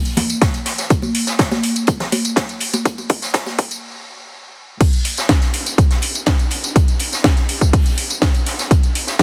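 A straight house groove drives this expansive excerpt, as a punchy, up-front electronic kick and a layered, tape-warm house kit with a cracking snare, metallic hats, crash and tambourine mingle with a small-room acoustic jazz kit's high-tuned snare and hi-hat, while bright, hard-handed congas pump under sidechain compression until 3.7 seconds, through a filter-swept build-up and drum fill that halt for a brief stop before the drop lands at 4.8 seconds, all pressed into a heavily compressed, radio-like sound with light reverb.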